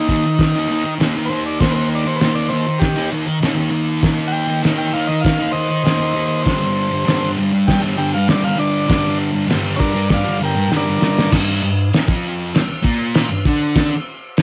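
Raw and gritty, this garage rock fragment moves at a straight 99 BPM in G minor, shifting from Eb5 to Gm, with a buzzy, overdriven combo organ taking a solo with light vibrato until 11.3 seconds. Beneath it, a thick, double-tracked fuzz guitar riff sits up front, while a cloth-damped, saturated drum kit with a rolled-off top thuds with a fat snare, tight kick and dark, muffled cymbals, adding a fill from 10.7 seconds. The home cassette recording carries light reverb, and the guitar drops out at 13.9 seconds as the drums carry on briefly.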